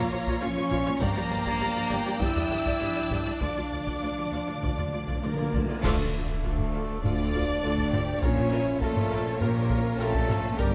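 Hard-struck taiko drums drive this relentless, dramatic slice of epic orchestral film score at 101 BPM in D harmonic minor, beneath mellow, distant French horn chords, a lush bowed string section, expressive violins carrying the melody and a second line, focused violas, very quiet rich cellos and smooth double basses on the bass, while timpani, dark clash cymbals, a cymbal swell and concert bass drum join at 3.4 seconds, a pure, crisp flute ensemble adds a second line from 5.2 seconds, and a full-band accent lands at 5.8 seconds, all set in a moderate scoring-stage reverb.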